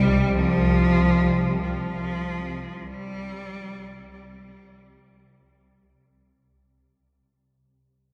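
A huge, wet reverb with a long 8.6-second tail surrounds this short excerpt of dark ambient drone, and the whole passage fades out from the start. The mood is desolate and unsettling, moving at a slow 48 BPM in 4/4 over a C minor chord. A swarming drone fills the low register, tense and warbling, with a detuned, granular, vintage character, its own built-in reverb and a phaser. High above it, a very quiet dark analog pad holds sustained chords with a deep, moody sawtooth edge thickened by chorus and phaser. A single bowed cello carries the melody between F3 and G3, rich and focused with vibrato, sitting up front yet sounding distant through a diffuse ambient delay. The cello stops at 5.3 seconds, leaving the pad and drone to sustain until 6.6 and 6.7 seconds.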